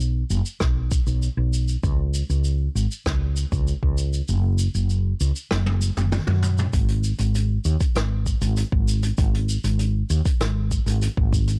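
A woody fretless electric bass sits up front in this relaxed sunset chillout groove, its dark, growly, round tone carrying an amped, hollow-body character as it moves between F#1 and F#2. The tempo is an easygoing 98 BPM in a straight 4/4, cut from a longer piece. Underneath, a vintage brush drum kit plays hi-hat, rim click, shaker and toms with a natural, small-room sound and a rolled-off top, set lower in the mix. A deep, layered electronic kick enters just after the start and drops out from 4.3 to 6.7 seconds, while a drum fill runs from 5.5 seconds up to the start of the next section at 6.7 seconds. The recording is dry and gritty, with little reverb, giving the whole a close, warm mood.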